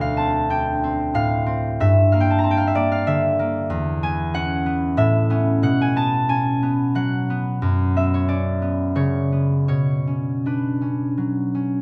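Close, detailed microphones and light reverb place a solo concert harp up front, its fingerpicked strings ringing with a warm, acoustic glow. This mysterious, wistful classical fragment, cut from a longer piece, moves in a rubato 3/4 at roughly 78-96 BPM, spanning from D2 up to Bb5. The harmony drifts from Dm7 and Gm6 through Eadd9 and F#7sus4 before settling on Bmadd9 near 9.7 seconds.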